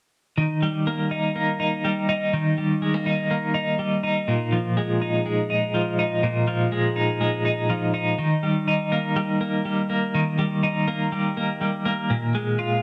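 A steady, straight four-beat pulse carries this short indie pop fragment, cut from a longer piece, with a nostalgic, youthful mood. A lone twelve-string electric guitar plays from 0.4 seconds to the end, picked cleanly with a twangy, compressed, up-front tone. A tremolo effect and the grain of cassette tape color its sound. The harmony rocks between two chords, and a new section begins at 8.2 seconds before the fragment closes at 12.8 seconds. A moderate studio reverb surrounds the guitar, and the home cassette recording lends the whole a homespun intimacy.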